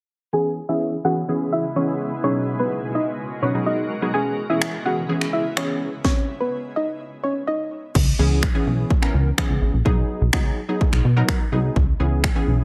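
A soft, round pluck carries a bittersweet dance-pop melody from 0.3 seconds, beside a funky, detuned polysynth comp, both pumping against the beat and moving through a filter sweep, with tape echo on the pluck. A shimmering, ethereal pad with built-in reverb soon drifts in, and an overdriven house kit with a punchy kick, cracking snare, finger snaps and crash cymbal enters at 4.6 seconds. After a brief stop, a dark, plucky analog bass drives the second section from 8.0 seconds in this otherwise dry mix, which is cut from a longer piece.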